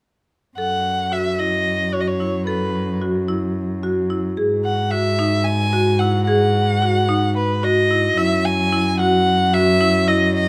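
Contemporary instrumental chamber music in 7/8, this brief excerpt cut from a longer piece moves at 221 BPM counted in eighths with a straight feel in F# dorian, its mood hypnotic and restless. A bowed violin carries the melody with a focused, vibrato-rich tone, sitting up front beside a dark, even cello that holds down the bass low in its register. Between them, a marimba struck with hard mallets spins arpeggios, its rosewood bars giving a woody, percussive brightness with an airy edge. All three instruments play together from 0.6 to 10.5 seconds, with the harmony shifting from F#m7 to G#5 and then settling onto Eadd9/F# as a new section begins at 8.2 seconds. Close, detailed microphones and a light reverb keep the sound intimate and clear.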